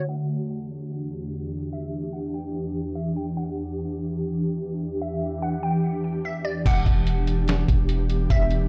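Heard as if through a big sound system in a bare room, with a large studio reverb and a low-pass filtered haze, this melancholic cloud-rap hip hop excerpt at 146 BPM in a half-time feel rests on an ethereal, warbling, detuned pad holding an Em7 chord with sidechain pumping, while a glassy, crystalline wavetable pluck carries the melody through a filter sweep and tape echo and a twangy, fingerpicked banjo sits in the background, until a deep sine 808 bass and a thumpy, pitched-down sampler-style drum kit with crash, hi-hat, kick and snare arrive up front at 6.7 seconds.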